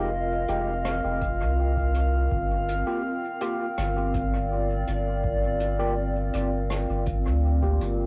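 Meditative and spacious, this ambient dub excerpt drifts from Fm9 to Gm7 over a warbling, nostalgic tape-like pad of sustained chords, barky tine electric piano stabs through a combo amp with dub echo and plate reverb, a round, up-front sub bass, and a glassy harmonics texture with drifting overtones, while distant jazz brushes on hi-hat and rim click with dub echo enter at 0.5 seconds and a very quiet analog electronic kick joins at 1.2 seconds, all captured as a home cassette recording in light reverb.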